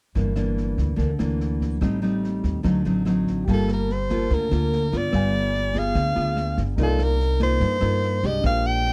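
A wistful, smooth bossa nova at 145 BPM in 4/4 opens at 0.2 s with fingerpicked nylon-string guitar, pizzicato upright bass and an open jazz drum kit playing kick, rim click and snare. The guitar sits up front with a deep classical tone and audible finger squeak. The steel-strung bass is woody and thumpy, and the drums sound dark in a small room, with a boomy kick, a medium-tuned snare and a rolled-off top. A natural baby grand piano enters at 3.4 s, adding warm accompaniment in the background. At 3.5 s the music settles into G minor as a clear, close-miked soprano saxophone takes the solo melody up front, playing in a pop style with vibrato. The dry, close 1970s-style studio sound and small room ambience frame this cut from a longer piece.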